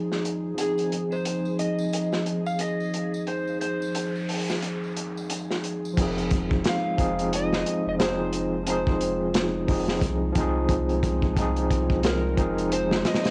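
A hazy home cassette recording with a light small-room reverb gives this cinematic, hypnotic trip hop fragment a worn, intimate sound. An overdriven tine electric piano, barky and gritty with fast tremolo and a sampler's crunch, carries the accompaniment over a dark analog pad of detuned, chorused chords sitting in the background, while a very quiet, string-like drone adds a tense, bright shimmer. A saturated breakbeat kit sits up front with a tight kick, medium-tuned snare and dark cymbals, its top rolled off, and a tambourine joins from the background at 0.6 seconds. That same moment brings in an electric slide guitar melody, slightly broken-up and fingered, trailing dub echo. An electronic noise sweep runs from 3.9 to 6.0 seconds, and at 6.0 seconds a round, deep sine sub bass arrives to anchor the second section.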